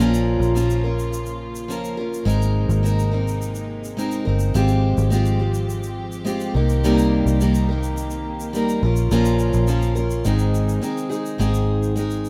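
A picked steel-string acoustic guitar, bright and boxy with fresh strings, leads this heartfelt, sunny acoustic pop excerpt in Ab major at 105 BPM, sitting up front beside a dark, round, foam-muted vintage electric bass and a grainy egg shaker, all entering together at the start. A chamber string section with light vibrato and a soft, sul tasto attack holds sustained chords in the background from the start until 11.4 seconds, over a progression moving from Bbm through Abadd9, Fmadd9/Ab and Cm7, back to Bbm, before settling on Ab. The rough home demo mix carries a light studio reverb.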